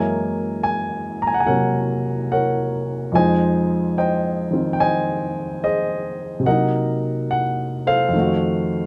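A dark, mellow grand piano plays alone from the first moment in this short solo jazz passage, its loose swing feel stretched by rubato and its mood sophisticated and intimate. The close, detailed recording sets the natural-sounding piano up front, with audible action noise and a touch of light reverb. Rich harmonies pass from Gb9 through Fm7 and Cm7b5 to F7b9, and the passage is cut from a longer piece at 8.9 seconds.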